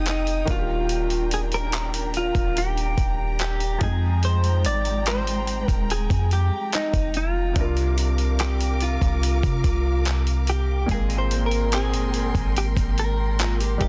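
A dense, heavily limited modern mix with little reverb frames this short cut from a longer contemporary R&B piece at 72 BPM in 4/4, its longing, sensual mood carried by a clean, direct-recorded electric guitar melody bathed in lush chorus and tape echo over a felt-muted upright piano with audible action noise and a dark, bowed symphonic string section with expressive vibrato. Underneath, a soft, round 808-style bass sits up front beside a gritty, sampler-style drum kit of thumpy kick, hi-hat and handclaps with vintage 12-bit grit, moving through Ebmaj7, Fm9 and C9sus4. At 10.9 seconds the harmony shifts to Abmaj9 as a fingerpicked nylon-string guitar enters in the background with its own tape echo, and a very quiet, bell-like celesta adds a brief sweet shimmer until 12.0 seconds.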